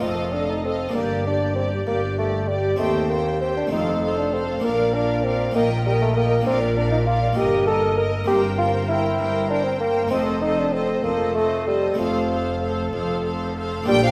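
A mellow bassoon sits up front from the first moment, carrying the melody over a full chamber string band and harpsichord in this festive, brilliant baroque-style concerto movement, cut from a longer piece. The tempo is a stately 65 dotted-quarter beats per minute in a straight 6/8, and the harmony moves from F7 through Gm, Cm/Eb and Bb before settling on F at 12.0 seconds. A clear, intense violin section also carries a melody high above, while a second violin section adds a rich, smooth second line, and a viola section fills the middle with an even, distant accompaniment. Beneath them a dark double bass section, soft in attack and sliding between notes, joins a warm, expressive cello section set in the background. An airy, round harpsichord plucks its accompaniment further back, and the whole ensemble is heard from deeper in a recital hall with a generous, wet reverb.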